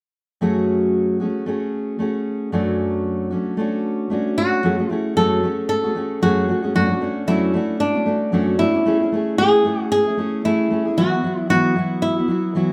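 Pop at 114 BPM with a light swing and a sunny, easy-going mood, this excerpt opens on a full-bodied fingerpicked steel-string acoustic guitar playing up front over chords like F#madd9, Dmaj7/F#, Amaj7 and Esus2, before a bright, fresh-stringed flamenco guitar enters at 4.4 seconds to carry the melody, both sounding like a band playing live in one large studio room with a moderate reverb.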